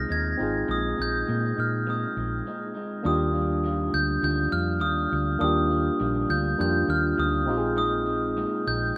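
A hazy, laid-back slice of indie and bedroom pop features a glockenspiel, struck with soft plastic mallets, carrying the melody up front in a ringing, bell-like voice lightly thickened by analog chorus. Beneath it, a barky tine electric piano adds bright, lightly overdriven accompaniment through a combo amp, while an electric guitar through a small old amp contributes picked, compressed, slightly broken-up accompaniment with subtle chorus and vibrato. A hollow-body short-scale bass, played with the fingers, sits up front with a dark, round tone. The groove moves at a relaxed 101 BPM in a straight 4/4 in Eb major, hovering on Bb9sus4 before a brief break at 2.5 seconds leads into a new section that opens onto Ebmaj9 at 3.0 seconds and returns to Bb9sus4 at 7.5 seconds. Light reverb and a rough home-demo mix give this short clip, taken from a longer piece, its intimate, homemade character.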